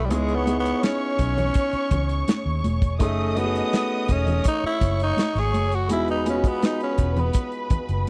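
A growling, raspy tenor saxophone with tape echo leads this smooth, cinematic slice of lush 1970s-style soul at 83 BPM in F# dorian, over veiled con sordino strings, an intimate concert grand with audible action noise, a round foam-muted electric bass, a tight dry drum kit and ringing high-tuned congas in the background, all captured in a close, dry studio sound as the chords move from C#m9 to F#m69 to Emaj9.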